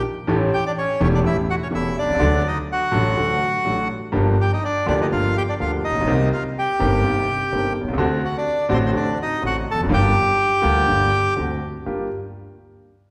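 Tango in G minor at 125 BPM in 4/4, played with a rubato feel that gives this short excerpt from a longer piece a passionate, sultry mood. A reedy, bright bandoneon carries the melody, close-miked, dry and full, sitting up front until it stops at 11.3 seconds. Underneath, a clear concert grand piano supplies the accompaniment with deep bass and long sustain, its polished, intimate tone also up front and close enough that the action noise is audible. A pizzicato upright bass with steel strings adds a woody, dark low end, sitting a little lower in the mix than the other two. The harmony moves through A7, D, Gm7, Cm7, D7 and Gm7, then passes through D7 before settling back on Gm7 near the close, and the whole performance rings out in a church or concert hall with a wet recital-hall reverb.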